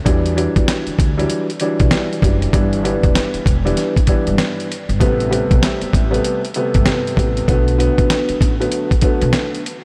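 A compressed, up-front sampler-style drum kit drives this gritty, tough boom-bap hip-hop excerpt, with a thumpy kick, fat snare and hi-hat over a swung sixteenth-note feel. A dark, mellow upright piano, slightly detuned and vintage-sounding through cassette-tape coloring and filtering, carries the Em9, G6, Am9 and Bm7 changes from 0.0 to 9.6 seconds. Beneath it, a pizzicato upright bass on gut strings adds a woody, acoustic low end, all set in a light, small-room reverb.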